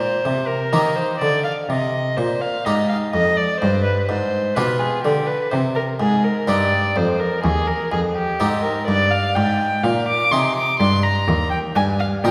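A violin, harpsichord and cello begin together in this dance-like, flowing fragment of a baroque-style sonata movement with continuo, taken in an unhurried, rubato 4/4. Up front, the single period-style violin carries the melody with a reedy gut-string tone and light vibrato, while a close-miked Italian-style harpsichord gives round, full, plucked accompaniment and a more distant, nasal-sounding cello bows the bass line. The whole passage sits in the wet reverb of a church or concert hall, moving through Eb, Cm, G7 and Ab before settling back on Eb at 11.3 seconds.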